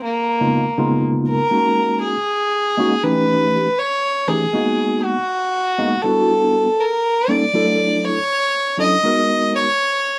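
Swaying in a straight 6/8 at 80 BPM, this funky, soaring jazz fragment sets a single bowed violin, rich and floating with a soft sul tasto attack and slapback echo, over a clean tine electric piano with phaser that comps through lush extended chords from Db13 to G#m7, all captured in a dry, close 1970s-style studio sound with light reverb and lossy compression artefacts.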